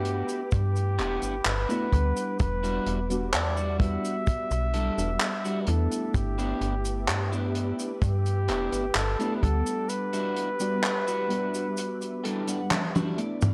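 A breathy, whispered flugelhorn carries the melody from the start over warbling lo-fi synth keys with subtle chorus and sampler grit, a silky, very quiet string machine, and a bright, twangy guitar riff on the edge of break-up with analog chorus, giving this dreamy, nostalgic vaporwave excerpt a slow, straight feel. Underneath, a snappy, metallic FM bass with tube saturation sits up front until 9.6 seconds alongside a dry, tight kick, while a damped 70s kit of cabasa, handclaps, hi-hat and toms adds gritty gated reverb. A clean electric guitar fill enters at 11.8 seconds and a drum fill closes the passage at 12.7 seconds, all within a light reverb.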